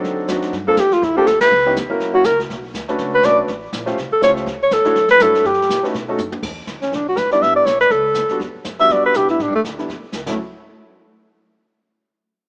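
Playful and relaxed, this brisk small-group swing excerpt puts a mellow alto saxophone up front from 0.7 seconds, its vibrato, subtone and scooped notes floating over a clear, intimate grand piano with audible action noise, a woody, thumpy pizzicato upright bass and a distant, roomy brush kit with dark cymbals and a boomy kick, all bathed in lush hall reverb through a rough home-demo mix with a small-speaker sound, punctuated by a band accent at 1.4 seconds and a drum fill at 6.2 seconds.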